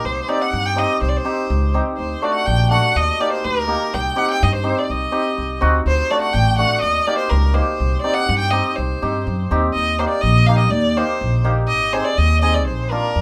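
A rich, focused violin, played by a single player, carries the bowed melody with vibrato in this bittersweet, festive klezmer excerpt, set in a straight 2/4 at 124 BPM and in C Dorian sharp 4 with moves through Cm, D and Eb. A woody, dark upright bass plucks the low line beneath it, and a hammered, shimmering cimbalom joins at 0.3 seconds with ringing accompaniment, all three parts sitting up front in a small room. At 9.8 seconds the tune shifts into Eb major, passing through Ab and Bb as the excerpt ends.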